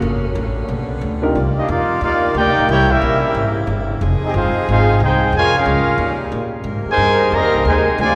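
Over a swung 4/4 pulse, this sultry, dramatic big band swing excerpt opens with a vibrato-laden saxophone section holding sustained chords above a woody, pizzicato upright bass, a natural-sounding baby grand piano adds a fleeting touch in the background at 1.2 seconds, and at 1.6 seconds a smooth-topped trumpet section takes the melody up front while a tight, vintage-toned trombone section carries a clear second line, all bathed in a long church reverb.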